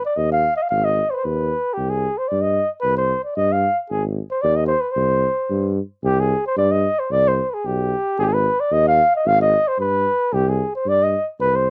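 A mellow, up-front flugelhorn carries a fiery, virtuosic Balkan folk melody in a classical style, with light vibrato and a cassette-tape coloring, over a lightly swung 2/4 at 112 BPM in C harmonic minor. A mellow tuba with a smooth top and its own light vibrato enters at 0.2 s to hold down the bass, as the harmony moves between Ab5 and C5 across two matching sections. The home-recorded cassette sound carries light reverb and a dulled high end, and this short cut from a longer piece runs about 11.7 seconds.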